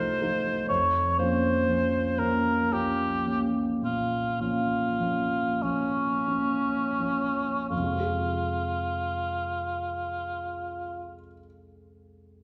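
Elegiac and solemn, this romantic classical fragment in F minor sets a present, up-front cor anglais singing the melody with light vibrato over a deep-bassed, warm concert grand piano, moving in a rubato 12/8 at 26-42 BPM that slows through the first 7.7 seconds as the harmony passes from F7 to Bbm/F before settling on Fm, with the cor anglais ending at 11.1 seconds while the piano carries on to 12.4 seconds in a reverberant recital hall.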